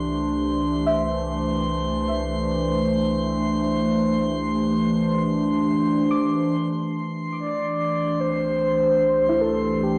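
A warbling, nostalgic tape-like pad fades in with mellow sustained chords over a deep, ominous rumbling drone and a calm haze of glassy drifting overtones, then soft, round plucked arpeggios join in the background at 0.9 seconds and a breathy, flute-like synth lead with vibrato takes up the melody at 7.4 seconds, giving this warm, weightless lo-fi ambient passage, cut from a longer piece and recorded at home on cassette, the glow of a wet spring reverb.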